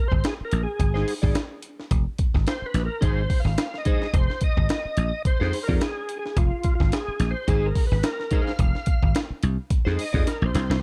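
Dark, warm digital ambience frames this short funk excerpt, which sits in F dorian at 108 BPM with a lightly swung sixteenth-note feel and a cool, hypnotic mood over a single Fm7 chord. An overdriven tonewheel organ carries the melody as a solo from the start, its thick, gritty tone colored by chorus vibrato and a slow rotary speaker as it moves between F4 and F5. Up front, a dry thumbed slap bass sounds punchy and growly, while a compressed, pitched-up breakbeat kit delivers a thumpy kick, a high-tuned snare and hi-hat with a tape-warm character. From 0.9 seconds, an electric guitar at the edge of break-up adds twangy, picked accompaniment through analog chorus, dropping out at 10.3 seconds just as the drums play a closing fill.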